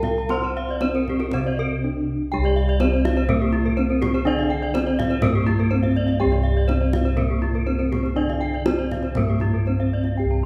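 A reverberant recital hall surrounds this brief cut from a longer Balinese gamelan piece, giving its brilliant, ceremonial mood a lingering ring. Bronze metallophones fill the texture: one carries the melody, another a lower accompaniment, and two more spin arpeggios high above, with the paired tuning of these keyboards producing shimmering beats. One metallophone, played with padded disc mallets, sounds mellow and slightly vintage, while the others, struck with horn mallets, ring out bright and airy. Bossed gongs hold the bass up front with a round, dark, smooth tone. A kendang adds deep, soft-handed drumming that carries a live-room character. After a short opening passage and a break from 1.6 to 2.3 seconds, a longer section runs to about 10.2 seconds, with the parts ringing on until the cut at about 10.5 seconds.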